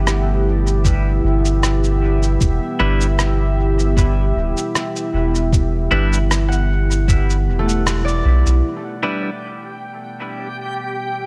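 Hazy and deep, this ambient dub fragment opens on a dark, warbling pad holding an Em7 chord with chorus, reverb and a gritty 12-bit sampler edge, while a ringing concert harp plays arpeggios through dub echo and a filter sweep. A round, up-front sub bass, a muffled, pitched-down kick and a small-room rim click with cabasa carry a light swing, joined at 2.8 seconds by clean hollow-body guitar stabs in dub echo, before a band accent near 7.9 seconds. From 8.6 seconds the pad takes a filter sweep, and then a reversed, granular texture swells in, bright and dreamy.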